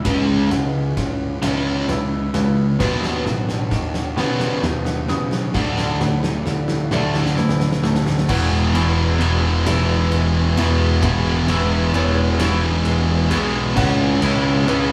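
Soaring and euphoric, this post-rock excerpt in E major moves at a slow 44 BPM in 6/8, where a boomy, gritty, fat-snared low-tuned drum kit with dark cymbals and a drum fill drives a build-up over a sludgy distorted guitar riff up front, an overdriven semi-hollow guitar riff, and fuzzy picked electric bass, while a twangy spring-reverbed guitar and a felt-muted upright piano with audible action noise sit back with arpeggios, lush bowed strings hold very quiet chords until 8.3 s as the music arrives on E, and a stone-room reverb gives the whole band a live feel.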